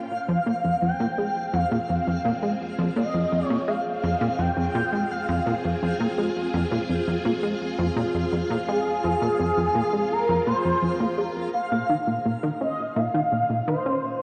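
A straight 4/4 pulse from a punchy, funky analog bass riff sits up front in this hypnotic, expansive stretch of sequencer-driven space music, as a swirling, vintage phased string machine holds sustained chords, a smooth, nasal synth lead with vibrato carries the melody through chorus, delay and shimmer reverb, and a sparkling granular texture fades in faintly in the background until 11.5 s, the whole bathed in a roomy concert-hall reverb and the warbling pitch drift of worn cassette tape.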